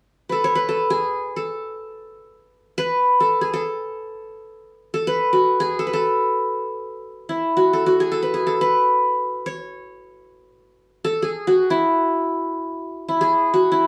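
Festive and warm, this short cut from a longer Turkish makam ensemble piece unfolds in free time in makam rast on A. A solo qanun carries it from 0.3 to 13.9 seconds, its plectrum-plucked, bright-edged triple strings sitting up front and ranging from E4 to C#5. Light reverb and the ambience of a small room, where the band plays live, frame the sound.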